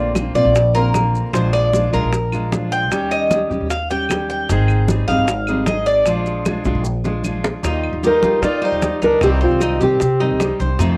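A metallic, double-strung Cuban tres leads this sunny, danceable Cuban son and guajira excerpt at 152 BPM in Eb major, soloing in arpeggios over a bright, full-bodied fingerpicked steel-string guitar, with both carrying a cassette-tape tone. A dark, growly pizzicato upright bass sits up front, while round, low-tuned bongos, thin-skinned congas and woody claves keep the groove in the background and grainy maracas sit close and dry. After a drum fill at 6.7 s closes the tres solo at 7.6 s, a thumb-plucked classical nylon-string guitar takes the melody and a bright trumpet with light vibrato adds a second line from about 8 s, both bathed in plate reverb.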